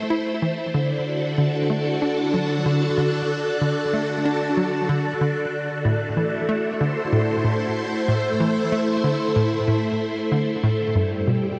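Ambient space music driven by a sequenced riff, this short cut from a longer piece feels cosmic and mysterious, moving at 94 BPM in a straight 4/4 in A dorian. A phased string machine holds sustained chords from the start to 11.6 seconds, its vintage sawtooth tone swirling and warbling through ensemble chorus and phaser, bright and up front with a soft attack and long release. Beneath it, a hollow square-wave pluck repeats a bouncy riff from 0.1 seconds, detuned with a noise layer and a fast, short filter pluck, thickened by chorus and trailed by tape echo. The harmony rests on Am and D before returning to Am and touching G near the close. A lush hall reverb with a 2.8-second tail soaks the whole mix, giving it a dreamy, floating depth.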